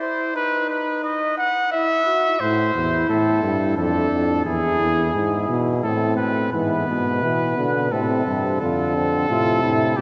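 Serious and driving, this classical canzona for brass ensemble moves at 88 BPM in 3/4, tuned a touch low at A4 = 437 Hz, and the imitative writing passes through chords like B/D#, Am and E. A clear, vibrato-laden trumpet carries the melody up front while a mellow, close-miked flugelhorn sings a second line in the background. A warm, close-miked bass trombone anchors the bass from 2.4 seconds, and a vibrato euphonium adds accompaniment from 6.5 seconds, all bathed in a wet cathedral reverb in this cut from a longer piece.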